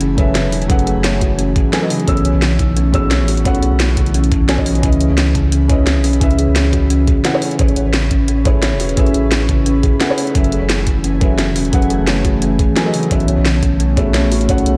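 This dreamy, rolling liquid drum and bass excerpt moves at 174 BPM in 4/4, with a gentle swing on the sixteenths driven by bright hi-hats and a cracking snare from a layered electronic kit that carries the grain of a small room, under a gritty, thumpy kick that enters at 0.2 seconds. A deep, round sine sub bass sits prominently beneath, sustaining through a chord cycle of F#m11, B9sus4, C#m9 and Amaj9. A felt-muted upright piano provides soft, intimate accompaniment with audible action noise and a touch of delay. A glassy FM pad holds ethereal sustained chords with slow attack and ensemble chorus. Woody kalimba arpeggios, plucked with the fingertip, drift in a diffuse ambient delay, and the whole mix is bathed in a lush hall reverb that gives it a hazy, floating character.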